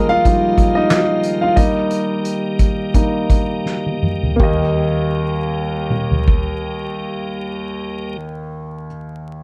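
A clear concert grand piano drives this anthemic, hopeful piece of piano-driven pop, its intimate, up-front tone carrying deep bass, long sustain, audible action noise and a plate reverb. The piano takes a solo through the opening 4.4 seconds while the pace slows, with a tonewheel organ holding sustained chords beneath it in a piping, scooped voice marked by key click and chorus vibrato. A soft-mallet drum kit of kick, snare, toms, hi-hat, ride cymbal and handclaps arrives at 0.3 seconds, sounding roomy and distant yet fat in the snare and punchy in the kick, with a rolled-off top. A drum fill from 3.7 to 4.4 seconds ushers in a second section, a gently swung 16th-note feel runs throughout, and the harmony moves from Ebadd9 to Eb. The dark, warm production adds vinyl crackle and a faint mains hum to this short fragment cut from a longer piece.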